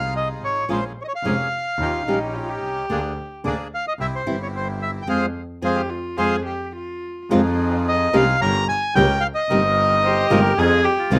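Melancholic and passionate, this rubato tango fragment in F minor at 110 BPM sets a reedy bandoneon melody with slapback echo over a second bandoneon's echoing stabs, a focused, bowed double bass with vibrato and a fingerpicked nylon-string guitar, while a floating sul tasto cello adds a smooth second line from 1.8 s, the band strikes an accent at 5.1 s, and a pure silver flute with vibrato and slapback echo slips in at 10.0 s, captured dry in an open-air setting.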